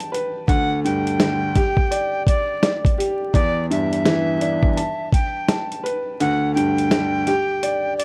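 Vinyl crackle and a small, lightly reverberant room frame this reflective yet tough boom-bap hip-hop cut at 84 BPM with a 16th-note swing, where a gritty, compressed sampler-style soul drum kit with a thumpy kick and medium-tuned snare sits up front beside a boxy grand piano filtered through cassette tape, while a breathy, bright jazz flute with vibrato, crisp chiff and a reedy edge carries the melody from 0.5 seconds over chords moving from Dsus4 through G5, Em7 and Asus2, and the kick drops out from 6.2 seconds to the end.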